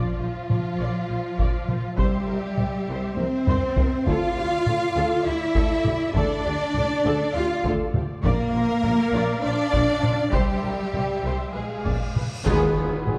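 Bowed strings and distant, mellow French horns open this relentless, dramatic cinematic cue together. Two violin lines carry the melody and a second line over a lush viola accompaniment with expressive portamento, while cellos and clear, focused double basses hold the bass. Heavy-stick taiko drums enter at 0.5 s and drive the music in 7/8 at 201 BPM, counted in eighths, with a drum fill bursting through shortly after. The harmony moves through Bb, C and D minor, returns to Bb and C, then turns to Bb7 before landing on E-flat minor. Very quiet, bright cymbal swells and tam-tam join at 8.2 s, and a huge, dark swell and impact arrive near the close, where a full accent at 12.5 s brings in tight trumpet stabs, a faint flute note and round, soft-mallet timpani. The production is dark and warm, set in a moderate concert hall reverb, and the passage is cut from a longer piece.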